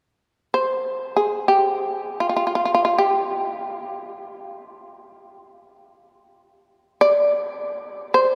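Unfolding in free time, this calm, austere fragment of Japanese traditional music features a lone shamisen that enters at 0.5 s and carries the melody up front. Its fretless, plectrum-plucked tone is mellow yet powerful, with a percussive, buzzing edge. A cathedral-like reverb from a church or concert hall lets each note hang in a long, resonant space.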